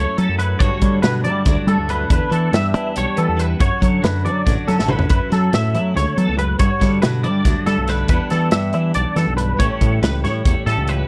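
A growling, overdriven picked electric bass sits up front in this wistful, playful math rock and midwest emo passage in 7/8 at 280 BPM (eighths), where a punchy acoustic studio drum kit enters at 0.2 s with a fill at 4.8 s, a bright, compressed, picked twelve-string electric guitar in spring reverb supplies accompaniment, and a clean, twangy electric guitar plays fingered arpeggios through ensemble chorus over chords moving from F#m7 and Gmaj9#11 to Em7, Dmaj7/F# and A7, all captured in a dry, close 1970s-style small-room sound.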